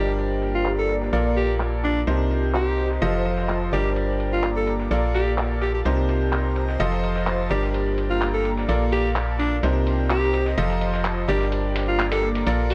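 Set to a straight 4/4 pulse, this joyful, euphoric piano house excerpt cycles through Gm, Bbmaj7, Cm7 and F7 as a brilliant, up-front grand piano riff and a raspy, breathy alto saxophone melody with vibrato, both trailed by tape echo, ride above a hollow, organ-like FM bass with tube saturation, an airy, detuned pad treated with chorus and phaser, a very quiet, gritty sampler-style soul drum kit of hi-hat, ride cymbal and snare drum from a large room, and layered electronic handclaps that enter at 0.7 seconds, in an echo-heavy mix with light reverb.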